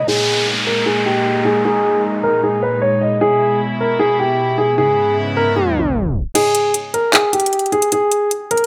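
Trap-leaning hip hop excerpt with a menacing, melancholic half-time feel, opening on a dark, mellow, vintage grand piano melody with long sustain over soft, floating bowed strings, both low-pass filtered and up front, while an electronic downlifter falls away in the first seconds. A filter sweep runs under the opening chords before a tape stop at 5.6 seconds, and at 6.4 seconds a trap kit of metallic hi-hats, handclaps and crash cymbal arrives with its kick muted beneath the continuing piano. Light reverb and a digital ambience surround the mix.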